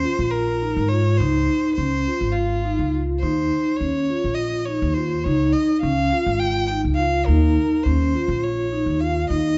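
The rhythm moves in an uneven 7/8 at 207 BPM counted in eighths, with a straight feel. This contemporary chamber excerpt sounds hopeful and playful, and all three instruments play together from start to finish over its 9.6 seconds. A single bowed violin carries the melody between F4 and G5, its tone clear, focused and close, with vibrato, though it sits a little lower in level than its partners. A vibraphone struck with soft mallets spins mellow, ringing arpeggios in a narrow band from Db4 to F4, colored by a fast motor vibrato. An upright bass with gut strings plays pizzicato from Ab1 to Ab2, woody and thumpy and placed up front. The harmony shifts between Eb5, Dbmaj7 and Db, tuned to A4 = 438 Hz, within a moderate recital hall reverb and a dark, warm production.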